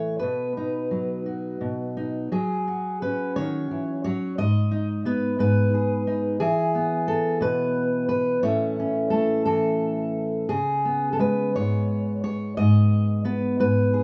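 A fingerpicked steel-string acoustic guitar with a dark, up-front auditorium tone carries this peaceful, nostalgic solo folk excerpt, moving in a slow 6/8 at 58 dotted-quarter beats per minute and spanning G#2 to D#5. After a brief opening on B, the harmony drifts through F#sus2, G#m, E, A and C#5 before settling back on G#m by 12.6 seconds. Light reverb and a small room ambience frame the playing, and the piece is cut from a longer work, tuned to A4 = 442 Hz.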